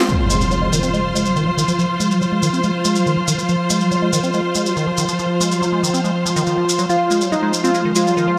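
A lush hall reverb gives this psychedelic trance excerpt a spacious, alien atmosphere, set in F phrygian at 141 BPM in straight 4/4 over an F5 chord. An evolving wavetable pad holds sustained chords that morph and warble with a vintage, full-bodied tone, its slow attack and long release softened by chorus and its own reverb. Beneath it, a squelchy, resonant square-wave acid bass plays a liquid riff under a continuous filter sweep, coloured by phaser and dub echo. A distant, bowed symphonic string section adds an even, lush texture with vibrato, while grainy, mellow acoustic maracas keep time and an electronic impact marks the opening at 0.1 seconds. At 6.9 seconds a thick, bold unison lead arrives up front, a detuned, wave-folded sawtooth voice with bright vibrato, treated with phaser and delay.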